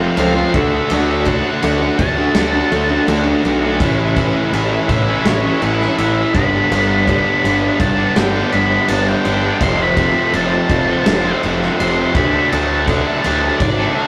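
An octave-fuzz lead guitar carries a dark, distorted solo melody high above this anthemic, restless quiet-loud alternative rock excerpt at 83 BPM, set against an up-front, compressed fuzz guitar riff and a background overdriven electric guitar riff. A punchy, fuzzed electric bass and a big rock drum kit with a punchy kick, medium-tuned snare and crash cymbal, its top rolled off, drive the chords F, D, A and G, while a picked steel-string acoustic guitar with audible finger squeak plays arpeggios in the background only until 3.8 seconds. The whole has a rough rehearsal-room sound with tube saturation and a moderate small-room reverb.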